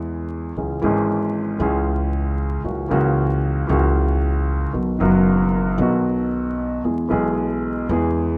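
A polished grand piano and a pizzicato upright bass open together in this sultry, passionate tango in E major, moving at 115 BPM with a rubato feel. The piano sits up front with long sustain as it carries the accompaniment through E, C#m, F#7/C# and B before returning to E, while the woody, growly bass adds a dark, thumpy low end beneath it. Light reverb, vinyl crackle and lossy compression artefacts give this short cut from a longer piece a worn, intimate character.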